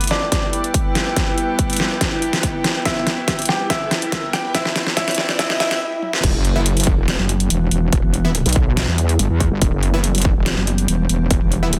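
A bright grand piano with audible action noise carries the melody over an evolving wavetable pad, an airy breathy pad and overdriven dubstep drums with a punchy kick, all building through a filter sweep and quiet risers in this menacing, chaotic half-time dubstep at 142 BPM in E minor. At 6.2 seconds the drop lands with an impact as a heavy, detuned wobble bass comes in, joined by punchy supersaw stabs with delay and then, at 7.2 seconds, an aggressive metallic FM wobble bass, both basses saturated and up front. The dense, heavily limited master has light digital ambience, with the pads' sidechain pumping under the overdriven drums.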